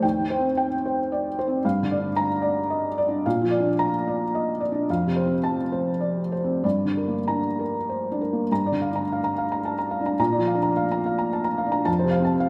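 A felt-muted upright piano plays alone from 0.0 to 12.5 s in this intimate, reflective fragment of neoclassical minimalist piano cut from a longer piece, moving in a rubato 3/4 at roughly 95-115 BPM in G minor through chords such as Cm/Eb, Gm7, Bb and F, its soft, boxy, thin-felt tone sitting up front with audible action noise inside a wet scoring-stage reverb.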